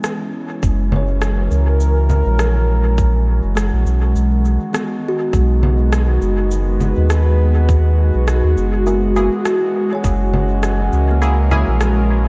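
A warbling, nostalgic pad of detuned sawtooth and triangle tones sits up front in this hazy, spacious ambient dub fragment, its slow-blooming chords coloured by chorus, phaser and its own built-in reverb, moving from F#9 to B6 and back. Beneath it, a deep, round sine sub bass enters at 0.6 seconds alongside a tight electronic kick that carries a tape-like warmth. Electronic rim clicks, cabasa and congas, sounding re-recorded in a large room, trail off in dub echo over a lightly swung groove. In the background, a woody, band-limited kalimba rings out soft, vintage arpeggios through its own echoes. From 8.9 seconds a muted, filtered chord stab of detuned sawtooth appears, evolving through chorus and dub echo. A moderate cathedral reverb soaks the dreamy mix, which is cut from a longer piece.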